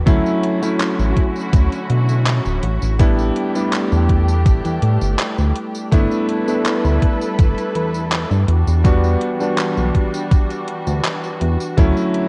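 A cassette-tape character and light reverb give this fragment of a longer vaporwave piece a nostalgic, faded air, moving at 82 BPM in a straight 4/4 in D major. Up front, an electric grand piano with a vintage tone and clangy low end plays chords, colored by subtle chorus and tape echo. Beneath it, a muted string section holds veiled, bowed chords with vibrato. A glossy, nasal synth bass blends pulse and sawtooth tones with a filter pluck and a dark, chorused sustain. A thumpy electronic kick and a detuned 8-bit drum machine of handclaps, hi-hat and tambourine both carry overdrive and 12-bit sampler grit, and gated reverb is added to the drum machine. The harmony moves from Dmaj9 to G69 at 3.0 seconds and Em9 at 8.5 seconds before settling back on Dmaj9, with the bass and kick stopping at 11.9 seconds.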